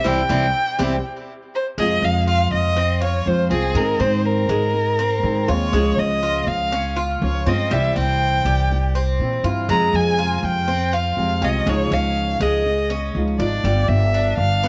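A band accent opens this nostalgic Latin piece in F minor at 121 BPM, and at 1.8 seconds the music settles onto an F minor chord, moving through Abadd9 and Db before closing on G7. A single bowed violin carries the melody with expressive vibrato and portamento. Beneath it, a woody pizzicato upright bass sits up front, a small, dark nylon-string guitar is fingerpicked, and a Cuban tres picks bright, metallic arpeggios on doubled strings through a tape echo, all in a lightly reverberant small room.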